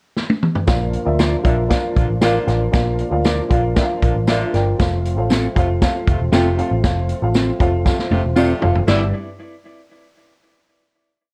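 A vintage drum kit opens the piece with a fill at 0.2 s, its punchy kick and medium-tuned snare sounding natural and up front with a rolled-off top. At 0.7 s the bass, piano, organ and tambourine join in an uptempo 1960s-style soul groove at 117 BPM in 4/4, danceable and joyful, with the snare driving on all four beats over a Bb chord that moves to F. A foam-muted electric bass plays a round, melodic and syncopated line, while a dark, woody upright piano, slightly detuned and boxy, adds rhythmic close-voiced chords with grace notes. From 1.2 s, short, compressed guitar chops land on the backbeat with tape echo, and from 1.4 s a clear saxophone section adds a second line of short stabs. A very quiet, fat tonewheel organ holds a sustained pad through a slow rotary speaker, with a jingly tambourine tapping every beat in the background. After another drum fill, the band arrives on a final G6 chord at 8.9 s, and the whole piece carries a cassette-tape character with a moderate large studio reverb.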